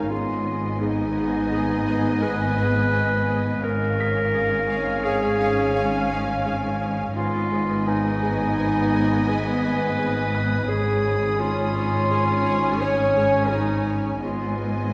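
Muted, con sordino strings open this mysterious, eerie suspense cue at 85 BPM in 5/4, G# dorian. A veiled violin section holds the melody on a high G#, while a second, distant violin section and soft-attack violas sit behind it and cellos and double basses anchor a dark, bowed low G#. A clear, up-front solo clarinet carries a classical-style second line over a pulsing, tempo-synced gated texture with chorus. A very quiet concert grand piano adds deep-bassed texture until 14.3 s, and a third background violin layer joins at 7.2 s as the chords alternate G#m and C#/G# in a recital hall's reverb.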